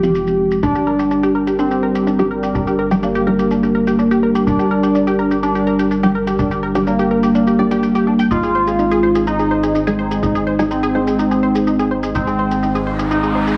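Driving and dramatic, this melodic techno excerpt at 125 BPM in 4/4 with a straight feel, tuned to A4 = 436 Hz, sets a juicy, warbling, bright resonant polysynth melody with chorus and digital delay over an evolving sawtooth pad with slow attack, a muted, deep dub chord stab under a filter sweep, a punchy, mellow sequencer bass, a detuned sequenced arpeggio entering at 0.6 s, and a dry analog shaker, moving from Fm through Gm to Ab in a lush hall with a heavily compressed radio sound before an electronic riser arrives at 12.4 s.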